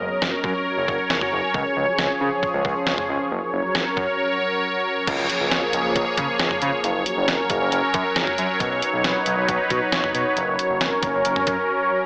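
Nocturnal and cool, this synth-pop excerpt moves at 136 BPM in a straight 4/4 through F#, C#, C#6 and Badd9 chords. An airy, evolving pad of detuned sawtooth with a noise layer, resonant filter swell and chorus sits up front, over a smooth, mellow synth bass with a moving notch. A thumpy, tape-warm 8-bit drum machine with a medium-tuned snare enters at 0.2 s, and the mix carries an AM radio sound with moderate plate reverb before falling silent at 11.7 s.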